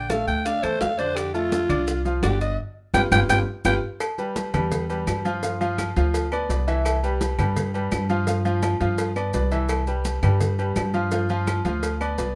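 Salsa at a festive, danceable 169 BPM, this cut from a longer piece opens with a raspy, gritty alto saxophone solo up front, played with vibrato until 3.7 s, as a band accent from 2.6 s and a drum fill from 2.9 s lead into a second section. A clear, present grand piano and a woody, thumpy pizzicato upright bass, both up front, carry the harmony, moving between G7 and Cmaj7 through the later bars. Ringing timbales and agogo bells sit close and dry over background congas with hard hands, tight high-tuned bongos and cowbell, and claves, with grainy, mellow maracas adding texture in a moderate studio reverb.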